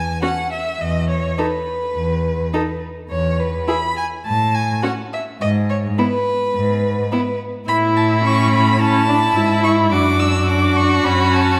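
A spirited, graceful classical-period string quartet movement, cut from a longer piece, moves at a quick 105 BPM in 4/4 with a rubato feel, starting in E major and shifting to A major at 7.7 s. A focused first violin carries the melody high above a smooth, close second violin line, while a rich viola adds expressive accompaniment with vibrato and portamento. Beneath them, an even, up-front cello anchors the bass, all four bowed by single players in a moderate concert-hall reverb.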